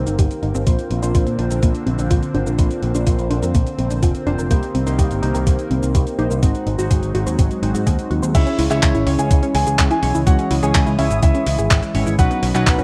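A dry, close 1970s-style studio sound with digital ambience frames this bittersweet, nostalgic italo disco cut at 125 BPM in a straight 4/4, where a thumpy, tape-warm electronic kick and a gritty, compressed sampler-style kit of cabasa, crash, handclaps and hi-hat play alongside a punchy, up-front picked electric bass through an envelope filter. A thick, detuned unison pad sits in the background under chorus and phaser, while a glossy, retro chorused polysynth stabs and a lush sawtooth unison pluck arpeggiates through tape echo, both synths carrying filter sweeps until 8.3 s. At that point the harmony moves from Cm7, Bbadd9 and Ab7 into C# minor, and a dark, mellow concert grand piano enters with a melody trailed by tape echo.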